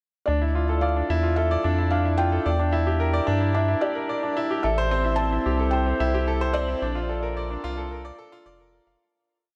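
Melancholic and hypnotic, this piano and strings electronica piece unfolds as one continuous build that fades out from 6.1 s to its close at 9.0 s. Up front, a bright grand piano with a polished, brilliant tone and audible action noise plays an arpeggiated 12-step loop that drifts against the bar, its long sustain extended by delay. Beneath it, a round analog bass with a deep, sine-like character holds long gliding notes with a fast attack. In the background, a felt-muted upright piano sounds soft and mellow as it traces an arch-shaped motif, falling silent at 7.6 s. The chords move from Dmadd9 through Em7b5 and Am7 to Bbmaj7 inside a huge ambient reverb that gives the music a spacious, lingering quality.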